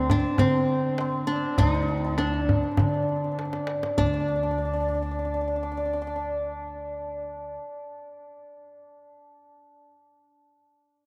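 This hypnotic, soulful Persian modal ensemble piece is cut from a longer work and set in a vast, echoing cathedral space, with a long, wet reverb. A fingerpicked flamenco guitar carries the melody up front, its warm acoustic tone given a slapback echo, while a hammered santur traces a shimmering, ringing second line in the same register. Beneath them, a pizzicato upright bass with steel strings supplies a woody, dark, growly foundation, and a tombak played with hard hands adds deep percussion with a small-room character. A drum fill arrives at 3.4 s, leading into a new section, and the tombak drops out at 4.3 s. The guitar and bass stop at 7.6 s, leaving the santur to ring on alone.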